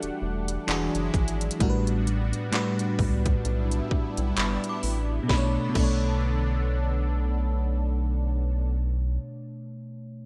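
This moody, sensual contemporary R&B excerpt moves at a slow 65 BPM in B minor with a swung 16th feel, built on a glassy, bell-like FM electric piano with chorus playing chords that pass from Em11 through E9 and A13sus4 before settling on Bm9 at 5.3 seconds. A rubbery, hollow square bass sits up front beneath a smooth, detuned analog pad, while a trap drum kit of hard-clipped kick, sharp snare, crisp hats, handclaps and crash, coloured with 12-bit sampler grit and gated reverb, plays until 6.0 seconds. A faint, warbling synth chime rings in the background through ensemble chorus and digital delay, all framed by light reverb and a bright 1980s-style digital sheen.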